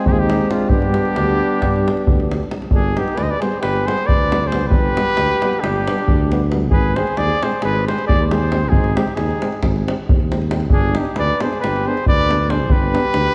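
Driven by a straight 9/8 pulse at 270 BPM counted in eighths, this fiery, restless Balkan brass band fragment, cut from a longer piece, moves between Ab and G chords. Up front, a deep, vintage-sounding davul with a band-limited edge sits beside a mellow trumpet carrying the melody with light vibrato, a smooth top and a classical poise. A punchy flugelhorn plays the second line below it, while a dark euphonium and a distant, roomy trombone fill out the accompaniment in the background, each with a touch of vibrato. The tuba anchors the bass with fuller vibrato and scooped notes that give it a jazzy lilt. After an opening passage, a new section begins at 2.7 seconds and carries the music through its close near 13.3 seconds, all within a moderate concert hall reverb and a dusky, rounded production.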